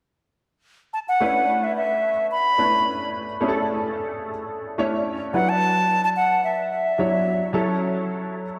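Awash in a lush, dreamy hall reverb, this soulful, deep amapiano excerpt in B minor at 109 BPM with a swung sixteenth feel opens on a pure, straight-toned concert flute carrying the melody from 0.9 s, its crisp attack trailed by analog delay, before an intimate, natural-sounding baby grand piano with audible action noise and short sustain joins at 1.2 s, accompanying through ensemble chorus over Bm11, D69 and F#m7 chords, both instruments sitting up front until the flute drops out at 7.5 s.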